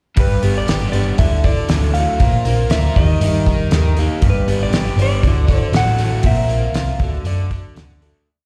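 A straight 4/4 pulse at 119 BPM carries this short, nostalgic and hopeful folk rock and heartland rock piece, heard live through a venue's PA with recital hall reverb, where cloth-damped, thuddy drums with a fat snare and tight kick and a round, dark hollow-body short-scale bass playing driving eighth notes sit up front beneath a bright, shimmering twelve-string acoustic strumming open chords in eighths, a crunchy, double-tracked overdriven guitar picking arpeggios, and a clean electric guitar carrying a motif-based melody through spring reverb, slapback and tape echo, over chords moving from G through Dadd9, Bbsus2 and Eb before a fade-out that begins at 6.2 seconds.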